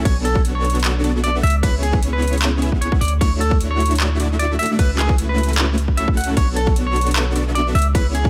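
The sound is dry, with little reverb, and it feels like a passage lifted from a longer future bass track. The mood is lush and playful, moving at 152 BPM in 4/4 with a half-time feel. A huge, detuned supersaw carries the riff from the first moment, its thick unison sawtooth body sustained and pumping against the sidechain. A deep, boomy 808-style bass sits up front beneath it, with its own sidechain pumping. An electric guitar at the edge of break-up enters at 0.1 seconds with a twangy, fingered melody, pumping and trailed by tape echo. At the same moment an overdriven, hard-clipped electronic kick and a trap kit with metallic hi-hats, handclaps and crash cymbal drive the groove, while the harmony moves through Bm9, C#m7, Dmaj9 and A69/C# before returning to Bm9 and C#m7.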